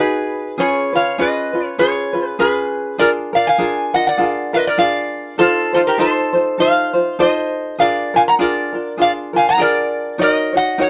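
Lightly swung eighths in 4/4 carry this dreamy, languid Hawaiian passage, cut from a longer piece, as a fingerpicked tenor ukulele picks out a light, warm accompaniment through a chain of seventh chords from Abm7 to Ebm7. Over it, a metal-body resonator slide guitar played with fingerpicks sings the melody in a bright, metallic, nasal voice. Both instruments sit up front in a close, detailed recording with a touch of light reverb.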